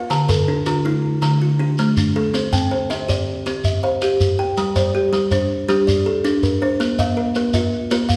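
This short excerpt from a longer piece opens with two kalimbas sounding together from the very start, joined almost at once by a shekere, in a hypnotic, rippling southern African traditional style built on an mbira-style interlocking cycle. Set in 12/8 at 108 BPM counted in dotted quarters with a straight feel, it moves in a G equiheptatonic tuning through Dm and C before shifting at 4.6 seconds to Gm and Bb for its second section. The up-front kalimba carries the stronger arpeggios, its thumbnail plucks woody and airy with a hollow-box resonance, while the quieter buzzing kalimba spins its own arpeggios from a solid board, adding a buzzing, bright edge that climbs slightly higher in range. The shekere sits close and grainy, its mellow tone given a compressed, saturated texture. A recital-hall reverb lends the whole recording a church-like wetness, letting each short pluck bloom and linger in the space.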